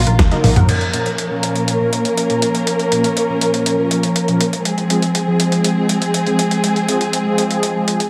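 Dark, expressive bowed strings and a round, hollow-body picked electric bass open this danceable, bittersweet italo disco excerpt in Bb minor at 121 BPM, joined by a brief warbling lo-fi pluck arpeggio with chorus and delay and a gritty, compressed, sampler-style drum kit. Detuned sawtooth synth brass stabs colored by chorus, phaser and delay enter at 0.3 seconds alongside a drum fill that runs to 0.7 seconds and leads into a section where the bass has dropped out and the up-front drums, strings and brass carry on, all over Ebm, Bbm and Fm chords in a lush hall reverb.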